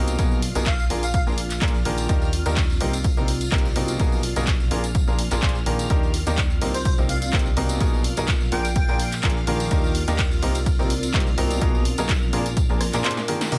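Piano house with an uplifting, euphoric mood, this short cut from a longer piece rides a swung 4/4 groove. A bright baby grand piano carries the riff from the start, its brilliant, short-sustain phrases pumping against the sidechain and trailed by digital delay. Beneath it, a plucky analog bass gives funky, fast-attack notes, while a punchy, tape-warm electronic kick pairs with an analog drum machine of snare, handclaps, hi-hat, rim click and crash, joined by a compressed, saturated tambourine. Shimmering string-machine violins hold sustained chords in the background with ensemble chorus, and a very quiet granular cloud pad adds a blurred, evolving haze from 0.5 seconds. An airy, dreamy lead with chorus, vibrato and delay appears briefly near the start and again from 6.7 to 9.1 seconds, and a drum fill and band accent near the close give way to a sub drop at 13.5 seconds, all in a dry, close-sounding mix over a looping progression built on Abmadd9/Cb, Bb7, Ebmaj7 and Cm7.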